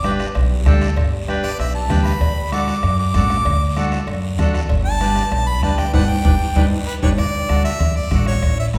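A clear harmonica solo with light vibrato and scooped notes opens this sunny, festive cumbia over reedy accordion, woody pizzicato upright bass, thick-skinned congas, raspy guiro and a soft-beater bombo set in the background, with ringing cowbell and timbales joining at 0.3 seconds, before a drum fill and band accent from 5.9 to 7.2 seconds lead into a new section, all carried by the reverberant sound of a recital hall.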